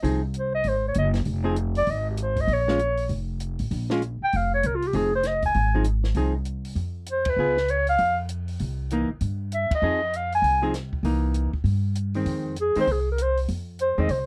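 A dry, close 1970s-style studio sound frames this cool, swinging small-group jazz excerpt in F minor at 196 BPM, where a breathy clarinet with vibrato, subtone and slapback echo carries the melody from 0.4 seconds over clean chords from a fingered hollow-body electric guitar, a woody, thumpy gut-string upright bass played pizzicato, and a compact cocktail drum kit with dark cymbals, a high-tuned snare and a punchy kick, the band striking accents at 7.2 and 9.7 seconds.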